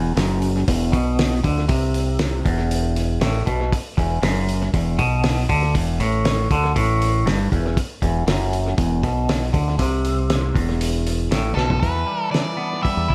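A twangy, phaser-treated electric guitar riff and a growling, overdriven fingered bass open this dark, trippy psychedelic rock excerpt in E minor at 118 BPM, joined at 0.2 seconds by a muffled, cloth-damped drum kit with a fat snare and dub echo, before a distorted octave-fuzz lead guitar melody, also dripping with dub echo, enters at 11.5 seconds, followed by a drum fill at 11.6 seconds, in an echo-heavy, small-room mix.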